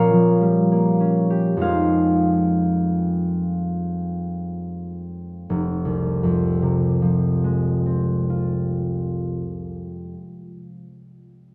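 A solo concert harp, thumb-plucked and ringing up front in a moderate recital hall reverb, plays a gentle, wistful classical fragment in F minor, cut from a longer piece. It moves in a rubato 6/8 at a slow 28-37 BPM, slowing over the first 5.5 seconds as the chords pass from Bbm6 to Fm7 before settling on F minor, and its range spans from F1 to F5.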